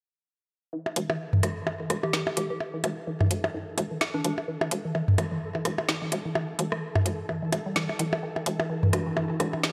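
Bright, 1980s-style digital production with a lush hall reverb frames this quirky, cool minimal techno excerpt, its swung sixteenths carried by an overdriven, up-front garage kit of woody snare and metallic hats alongside a clicky kit of blips, rim clicks and toms, over a hollow, bouncy FM bass. A juicy, squelchy pluck riff runs through a filter sweep with phaser and delay, while a grainy, flickering texture sits in the background. A round, keys-like lead with vibrato appears from 2.0 to 4.3 seconds, and a muted, mellow dub chord stab slips in at 8.9 seconds.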